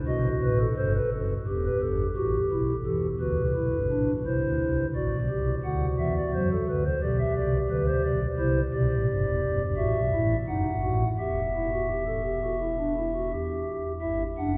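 A soft, hollow stopped-flute pipe organ plays alone from 0.1 seconds in this joyful, lively excerpt of a baroque-style three-part classical fugue, its mellow, romantically voiced lines running from deep bass to high treble up front while a long, wet cathedral reverb makes the instrument seem heard from further back in the room.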